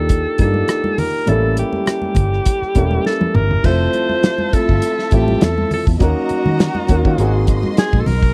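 Lush 1970s-style soul at 102 BPM with a smooth, bittersweet mood, this brief cut from a longer piece sets a bright, forceful alto saxophone melody over boxy baby grand piano chords, a round, foam-muted electric bass, an up-front soul drum kit with dark cymbals and a tight kick, and thin-skinned congas in the background, while a distant bowed string section with vibrato and portamento enters at 3.6 s, just after a drum fill, as the chords move from Ebmaj9 through Fmaj7 to G#9 in a dry, close studio sound.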